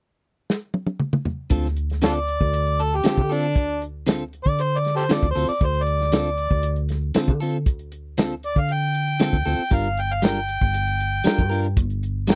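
A straight-eighth soul blues groove in 4/4 opens this smoky, soulful cut from a longer piece, with a dry acoustic drum kit of hi-hat, kick, snare and toms entering at 0.5 seconds with a fill. At 1.5 seconds the band settles onto a Dm7 vamp, later shifting to Gm7. Bright, clean, compressed picked electric guitar stabs join the round, punchy hollow-body short-scale bass, fingered and amped with a dark tone. From 2.0 seconds an overdriven, gritty amplified harmonica takes the solo melody in a jazz style, with light vibrato, tongue slaps and scooped notes. The drums sound warm and smooth with a medium-tuned snare, tight kick and rolled-off top, and every part sits up front in a close, 1970s-style studio sound with little reverb.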